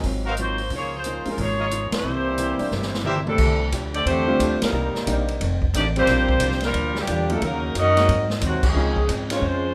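A swinging 4/4 groove at 179 BPM drives this joyful big-band jazz clip, built on a roomy drum kit with dark cymbals and a punchy kick, a woody pizzicato upright bass, a natural-sounding baby grand piano and a clean, hollow-body archtop guitar sitting in the background. A warm saxophone section carries the melody up front with light vibrato. A clear, present trumpet section adds tight stabs until 3.2 s, and a soft-attacked trombone section enters with a second line at 1.9 s. Band accents punctuate the clip at 1.9, 4.6 and 8.6 s, and a drum fill leads into the second section, all heard in a moderate large-studio reverb.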